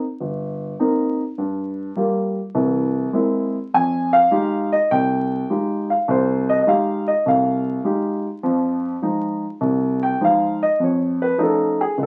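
Swinging and cool, this solo jazz fragment in F minor at 102 BPM features a dark, mellow grand piano with a natural, short-sustained tone placed up front, ranging from G1 to Ab5 over chords such as Cm7, Gm7, Caug7 and Fm9 before moving into a new section at 8.4 seconds, all set in a wet studio ambience and heard through the crackle of a very old 78 rpm record, tuned slightly low to A4 = 438 Hz.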